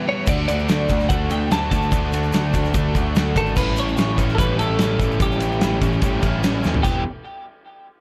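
A loose, punchy indie drum kit drives a straight 146 BPM in 4/4, with a fuzzed, overdriven picked bass and a faint, grainy tube shaker joining at 0.3 seconds, and a drum fill arrives at 6.6 seconds just before the Dmaj7 and A7 harmony turns to Em. Over a very quiet, moody analog pad with slow-attack detuned sawtooth chords, a biting overdriven guitar riff sits beside a crunchy chorused second riff tucked in the background, while a twangy, compressed twelve-string electric carries a clean melody through tape echo. This restless, bittersweet indie rock fragment has a dark, dry production with the drums up front.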